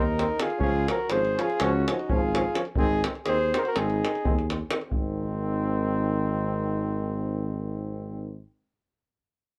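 Balkan brass band folk in a virtuosic, exuberant 9/8 at 252 BPM counted in eighths, this excerpt sits in Ab mixolydian and moves from Ab to Db and back to Ab. An up-front, breathy flugelhorn carries the jazz-style melody with vibrato and a plate reverb, while a smooth-topped alto saxophone adds a second line until both fall away at 4.5 s. A mellow, prominent tuba holds the bass beneath a bright, roomy trombone and a distant euphonium, and a tight, saturated, compressed davul drives the ensemble from 0.2 s to 5.2 s, all within a light reverb.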